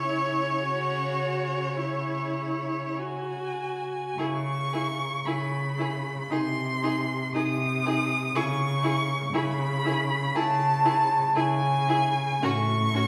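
A rich-toned first violin carries the yearning melody up front, bowed with focused vibrato and reaching as high as D#6, in this melancholic, slow romantic string quartet movement in C# minor. It is taken at a rubato 48-61 BPM in 4/4. Beneath it, a clear second violin sings a distant second line, the viola supplies expressive accompaniment with soft attacks and portamento, and a dark, woody cello holds the bass. The harmony moves from C# minor to F#m/A at 12.4 seconds, all set in a reverberant recital hall heard from further back in the room as part of a longer piece.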